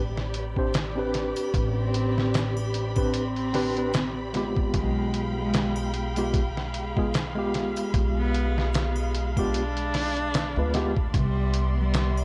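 Worn, warbling cassette tape with a small room's light reverb colours this hypnotic, melancholic trip hop excerpt at 75 BPM in 4/4 with a swung sixteenth feel, moving from Am11 through G7b9/B to Cmaj9. A compressed, pitched-down sampler drum kit with a thumpy kick sits up front beside a woody, dark pizzicato upright bass, while a lush bowed string section carries sustained chords with vintage 12-bit grit and a slightly out-of-tune tine electric piano adds tremolo and tape echo. From 1.8 s a single close cello sings the melody with vibrato, portamento and tape echo, as an egg shaker and triangle stay dry in the background.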